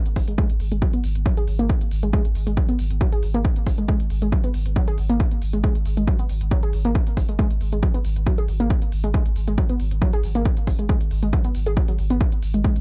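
Electronic hi-hats open this excerpt from a longer track, smooth and layered with a sidechain pump, joined almost at once by a punchy, up-front kick drum and a deep, saturated sub bass sitting on G#1. This is driving peak-time techno at 137 BPM in a straight 4/4, set in G# minor, with an intense, hypnotic mood. The bass is thick and sine-based, overdriven and low-pass filtered, with a fast attack, sustained notes and the same pumping sidechain feel. From 0.3 seconds a warbly, dusty pluck carries the riff between F#3 and G#4, blending triangle and sawtooth tones with detuning, a noise layer, a filter sweep, chorus and tape echo for a mellow, lo-fi character. The whole excerpt runs as one unbroken section to 12.8 seconds, and the sound is dry and gritty, with the drums carrying the slight colour of a small room.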